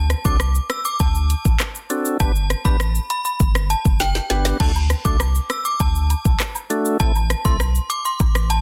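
A straight, bouncy dancehall groove comes from an up-front electronic afro-pop kit with a deep kick, woody snare, dark hi-hats, rim clicks, handclaps, shaker and crash, plus a drum fill at 4.0 seconds, all over a round, sine-like sub bass that sits forward in the mix. A clean, fat tonewheel organ with key click and slow rotary speaker provides accompaniment over D7, G, D and Am, while a high, inharmonic FM synth chime rings out the melody through ensemble chorus, tremolo and delay. Acoustic woodblock and cabasa join in the background at 4.8 seconds, giving this tough fragment of a longer piece a dense, heavily limited modern sheen in a digital ambience.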